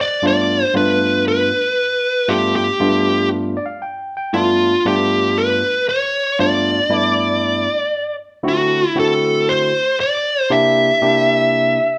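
Laid-back and gritty, this short blues fragment with a light sixteenth-note swing sets a smooth, overdriven, picked electric lead guitar melody up front against a bright, barky, clean tine electric piano accompaniment that adds a fill at 3.3 seconds, with the band heard playing live together in a large studio room with moderate reverb as the changes move from G7 to D7 and C7.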